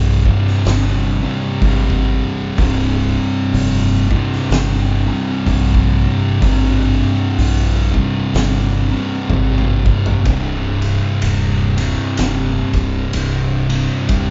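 A pair of thick fuzz guitars sits up front in this ominous, brooding stoner and doom metal excerpt, both picked and distorted, one with a warm tone and the other darker, each working a heavy riff. Beneath them a growling fingered electric bass, overdriven and punchy, plays the bass line through the whole passage. An oversized low-tuned acoustic drum kit joins at 0.3 seconds, its fat snare, punchy kick, dark cymbals, hi-hat, ride and toms sounding saturated and gritty in a bright, pumping stone room. The slow, swung groove holds on a power chord until a drum fill from 9.3 to 10.3 seconds carries the band into a new passage built on a minor chord. The group plays live in one room with a moderate large studio reverb, and the sound stays dull and heavy, with the top end rolled off.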